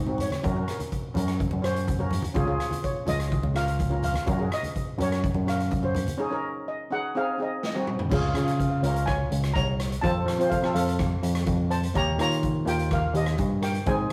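Bouncy and sunny, this 14-second calypso fragment in Db major at 125 BPM sets a shimmering lead steel pan, struck with soft rubber sticks and featured as a solo through 8.1 seconds, over a metallic double-seconds pan accompaniment, a bell-like, up-front tine electric piano carrying the bass, low-tuned congas sitting in the background until 6.2 seconds, and a boomy, airy street-band drum kit with dark cymbals whose fill closes a break at 8.1 seconds, all heard in a rough rehearsal-room recording with moderate reverb as the chords move from Gb and Db through Absus4 to F and Eb7.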